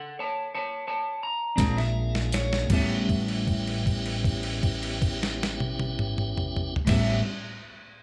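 A slow blues in 12/8 with a straight feel, rollicking and swaggering in mood, this short passage is cut from a longer piece. A bright, twangy electric guitar through a small old amp, slightly broken-up and picked, plays a solo on its own while the pace slows down, its tone washed in lush chorus. At 1.6 seconds the band enters on a Bb9 chord with a drum fill from a gritty, pitched-down, compressed sampler-style kit with a thumpy kick and medium-tuned snare, set up front alongside crash, hi-hat and toms. A clean hollow-body electric guitar picks the accompaniment through harmonic tremolo, a woody pizzicato upright bass on gut strings anchors the low end, and a piping, scooped tonewheel organ holds lightly overdriven chords through a slow rotary speaker. From 2.7 seconds the harmony settles on A9 under a long held note, with the ensemble sitting in a moderate recital hall reverb.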